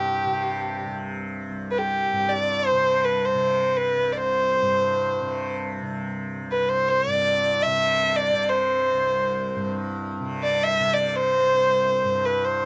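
Hindustani classical music in free time, devotional and meditative, where a single bowed violin carries a smooth, even, vibrato-rich melody up front over a softly plucked tanpura drone whose buzzing shimmer sits lower in the mix, all captured in a dry, close 1970s-style studio sound across this 12.7-second fragment of a longer piece.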